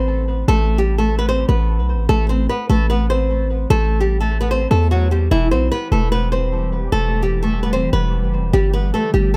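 An echo-heavy small-room mix frames this dark, eerie half-time trap fragment at 149 BPM in A minor, tuned to A4 = 437 Hz, where an up-front, fingerpicked flamenco guitar with audible finger squeak and analog delay carries the melody over a punchy, heavy 808-style bass with a noise layer, while a glassy, ethereal FM pad with ensemble chorus and its own reverb drifts in from the background at 5.8 s as the chords move from Am to Em to G.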